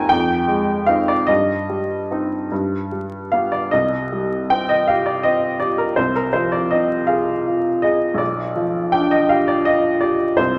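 Wistful and melancholic, this romantic nocturne for solo piano moves in a flexible, rubato 12/8 lilt, a brief excerpt cut from a longer piece. A warm baby grand sits present and up front, ranging from deep bass to the upper register as it drifts through a minor-key progression that settles on a dominant chord near 8.2 seconds. A wet, roomy studio reverb and a vinyl crackle lend the sound a hazy, aged intimacy.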